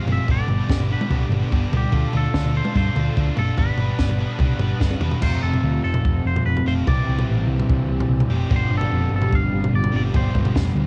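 Indie rock at 146 BPM with an upbeat, jangly feel, captured as a home cassette recording in a light reverb, this short cut opens with a bright, twangy clean guitar melody over a crunchy overdriven riff guitar and a raw garage guitar in the background treated with analog chorus and tape echo. A round, dark hollow-body bass and a compact cocktail kit with a punchy kick, high-tuned snare and dark cymbals drive the chords from G through Dm7, F and Cadd9, with a drum fill at 4.8 seconds leading into the second section. At 8.5 seconds a very quiet, mellow string machine cello pad with slow attack and ensemble chorus slips in under a G7sus4 chord.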